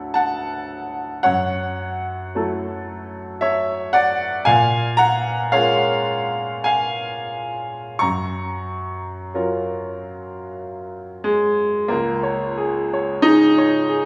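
Dreamy and hazy, this fragment of impressionist classical solo piano drifts in a rubato triple metre, its clear, up-front concert grand reaching from deep bass into the high register as the harmony moves through D69, F#m7, Bbm7 and Gbmaj7 before settling on Db5 at 11.9 seconds, the whole sound steeped in the wet reverb of a church or concert hall.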